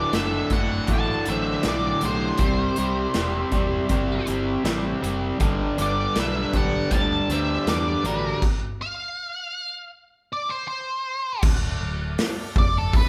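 Raunchy and swaggering, this blues rock power trio excerpt with a southern rock edge puts a dark, fuzzed-out octave lead guitar with slapback echo up front over a bright, double-tracked semi-hollow riff guitar, a growly picked bass, a big rock drum kit with a boomy kick and a very quiet gritty tonewheel organ on slow rotary, with a faint bluesy second lead guitar until the riff and that second line stop at 8.4 seconds for a break before the lead guitar solos from 11.4 seconds, all in a moderately reverberant large studio room where the band plays live.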